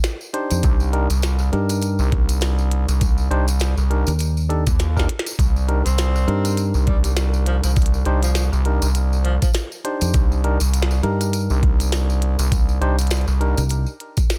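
A gritty, nasal synth bass sits up front in this playful glitch hop excerpt at 101 BPM in C minor, its wave-folded, resonant tone joined by a dark, round fingered electric bass warmed with tube saturation. An overdriven, thumpy electronic kick pushes forward with the basses, while a glitchy kit of clicky hats, rim clicks and a tiny snare plays further back, with a drum fill from 4.8 to 5.4 seconds. A jingly tambourine adds sparkle throughout, and a bright, clean tine electric piano plays stabs over a Cm7 chord, roughened by 12-bit sampler grit, pumped by sidechain compression and trailed by delay. From 5.9 to 9.5 seconds a breathy, whispered tenor saxophone offers an intimate solo line with light vibrato and its own delay. The swung sixteenths give the groove a loose bounce, and the mix stays dry and close.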